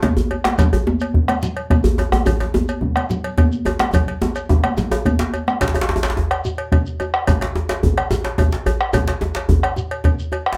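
West African traditional drum ensemble music, driving and festive at 144 BPM in 12/8, built on a round, vintage bombo up front, a cracking djembe with metal rattles struck with hard hands, a second tight djembe in the background, a metallic, dry cowbell, a grainy, mellow shekere and bright, high-tuned, saturated congas, with a drum fill from 3.9 s leading into a new section at 5.6 s where the congas stop, all set in a wet small-room reverb.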